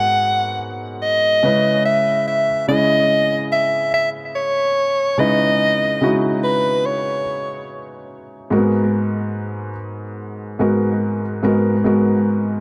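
Swung sixteenths in an unhurried 4/4 give this moody, longing R&B excerpt a loose, lilting sway. A felt-muted upright piano carries the accompaniment from start to finish, its soft, mellow tone sitting intimately up front as it moves between minor-ninth chords. Over it, a breathy soprano saxophone sings the melody in a jazz style, clear and lightly touched with vibrato, before dropping out at 7.7 s and leaving the piano alone until the close at 12.6 s. Both instruments trail tape echo, and the echo-heavy mix is bathed in moderate spring reverb and a small room ambience. The result feels close and hazy, like a late-night confession caught in mid-thought.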